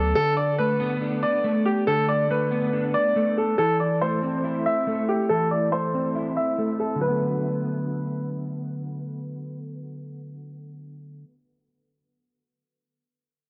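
Eerie and brooding, this half-time trap and hip hop fragment, cut from a longer piece, sets a clear, open concert grand piano melody up front against a dark, clean, fingered electric guitar accompaniment treated with ensemble chorus. The whole is bathed in a huge ambient reverb and a worn, warbling cassette-tape character with pitch drift and a low-pass filter, while a filter sweep runs through the opening 7.0 seconds. The chords move from Gadd9/D to Am and then settle on Bm7 at 7.0 seconds, with the piano stopping at 8.3 seconds and the guitar carrying on to 11.3 seconds.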